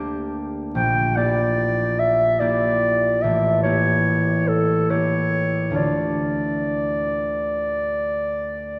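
Heard from further back in a concert hall with a 2.5-second wet reverb, this short, solemn and melancholic romantic classical excerpt in D minor moves in a rubato 12/8 at 45-49 BPM in dotted quarters, with a clear, soft-attacked solo clarinet singing the melody between G4 and G5 up front while a fingerpicked, ringing concert harp accompanies from A1 to G4 through Gm/D, Em7b5/Bb and A7b9 before settling on Dm at 5.8 seconds.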